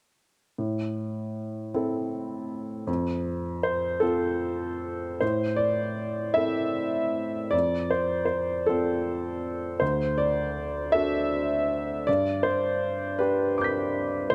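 A warm upright piano carries this short neoclassical minimalist piece alone, its woody, vintage tone sitting up front with long sustain that lets each chord hang in the air. The mood is intimate and wistful, moving in a slow, rubato 6/8 at about 53 BPM counted in dotted quarters, in A minor with the instrument tuned to A4 = 436 Hz. The piano spans from D2 up to B6, and the harmony opens by rocking between A minor and F before a second passage begins at 5.2 seconds, repeating that pair and then moving through D and on to G at 12.1 seconds. Close, detailed microphones capture the smooth character of the instrument, wrapped in a light reverb. Cut from a longer piece, it runs from 0.6 to 14.3 seconds.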